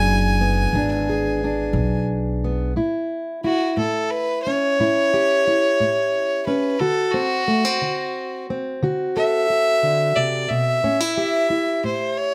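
A rich, earthy bowed fiddle with light vibrato and plate reverb leads this gritty, soulful acoustic country blues fragment in 12/8, moving into a solo at 2.8 s over a boxy, fingerpicked parlour steel-string guitar, while a woody, thumpy pizzicato upright bass on gut strings anchors the opening E7 before stopping at 2.7 s, all heard up front in a moderate studio room as the chords travel through A7 and D7.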